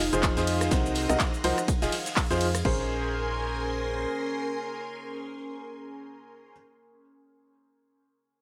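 A bright upright piano sits up front in this soulful, bittersweet piano house excerpt, playing a woody, intimate riff with audible action noise, long sustain and a dub echo trailing behind it. Beneath it, an organ-like FM bass gives hollow, percussive notes with a fast attack, roughened by tube saturation, until it stops at 4.1 s. A shimmering vintage string machine holds sustained violin chords with a soft attack and ensemble chorus, while a deep, moody pad of detuned, wave-folded and ring-modulated tones drifts in with a slow attack and its own reverb, lasting until 6.7 s. The drums cover only the opening drop: a punchy, tape-warm analog drum machine brings kick, crash, claps, cabasa, rim click, hi-hat and ride, while a gated 80s kit with a medium-tuned snare, tambourine and an airy stone-room sound stays in the background, and they fall away by 2.8 s. The chords move from Fm7 through Cm7b5 and back before settling on Bbm9 at 2.6 s, with sidechain pumping on the piano, bass, strings and pad, and the whole mix set in a small room with light reverb.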